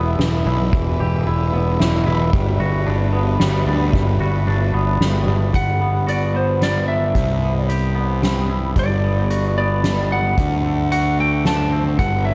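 Cinematic and melancholic, this post-rock excerpt moves at 112 BPM in a straight 3/4, cut from a longer piece and colored by cassette tape, light reverb and studio ambience. A twangy, clean electric guitar plays fingered arpeggios throughout, its pitch warbling with a drifting wobble and trailed by analog delay. Beneath it sits an up-front, fuzz-soaked picked bass, while a soft-mallet drum kit gives the hi-hat, kick, snare and ride a hall-like, natural sound with dark cymbals, a fat snare and a boomy kick. A rich, earthy chamber string section holds sustained chords in the background for the opening stretch, drops out at 5.5 seconds, and returns briefly near the end. At 5.6 seconds a bright, slightly broken-up lead guitar enters with a picked melody, also carried by analog delay, as the harmony moves from E minor and G major seventh toward C major seventh and a closing D7.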